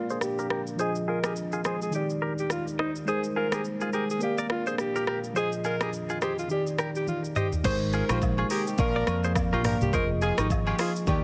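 A swung sixteenth-note groove at 105 BPM in 4/4 drives this breezy, romantic afrobeats excerpt, carried by an up-front, produced drum kit with a deep kick, metallic hats, rim clicks, shaker, toms and crash, plus a fill from 7.1 to 7.6 seconds. A breathy alto saxophone sings the lead with light vibrato and a smooth top, over a clean tine electric piano heard through its built-in speakers and a twangy, picked guitar riff treated with delay. Beneath them, a moody sawtooth pad with slow attack and long release holds the chords, thickened by chorus and sidechain pumping, while a filter sweep runs through the opening section. At 7.6 seconds the second section arrives with a round, dark fretless bass, soon joined by background agogo bells, woodblock, maracas and handclaps, and a tight horn section playing a second line from 8.1 seconds. The chords cycle through Bb, Fm7, Ebmaj7 and Abadd9, and the whole mix carries a heavily compressed, radio-like sound in light reverb.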